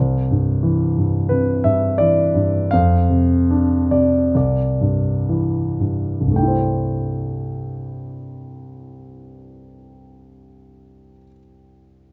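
Close, detailed microphones and a light reverb give this short fragment of a longer piece an intimate, natural sound. It is a lyrical classical work for solo piano, played with a rubato feel, and the mood is warm and sunny despite the instrument's dark tone. The concert grand sits up front, mellow in character and with a short sustain, its deep bass reaching down to C2 and its range extending as high as G5. The opening phrase slows gradually through its first 6.3 seconds before a second phrase takes over at that point. The piano plays alone throughout, and the fragment ends at 12.1 seconds.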